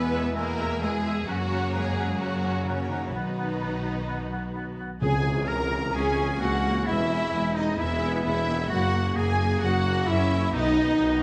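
In a straight 4/4 pulse, this heroic, determined film-score passage, cut from a longer piece, opens with a lush bowed string body: violins carry an expressive, vibrato-rich melody over a distant second violin line, rich violas, cellos and an up-front double bass, while very quiet trombones and mellow, roomy French horns hold sustained chords. A bright, vintage-tinged clarinet, an airy flute ensemble and a soft-attacked oboe weave secondary lines, the oboe dropping out at 4.9 seconds. At 5.0 seconds the full ensemble accents the repeat of the opening idea with hard-mallet timpani and a dark, dry tam-tam, as a mellow tuba joins the bass for the rest of the adventurous phrase, all set in a moderate scoring-stage reverb.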